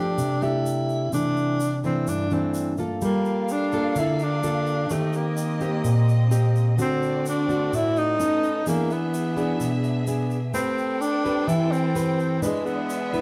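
A large studio's wet reverb surrounds a band playing live together in one room, giving this romantic, breezy bossa nova cut from a longer piece an airy glow. Up front, a breathy tenor saxophone carries the melody in a whispered, intimate jazz style, its soft attack and warm vibrato sitting close to the listener. Beside it, a classical nylon-string guitar supplies fingerpicked accompaniment, with the occasional finger squeak adding a human touch. A grainy, bright tube shaker joins at 0.2 seconds, sounding close and dry against the reverberant space. At 3.0 seconds, a rich studio violin section enters with lush, expressive sustained bowed chords as the harmony moves through colours such as Gm9, Eb6 and Am9, filling out the arrangement.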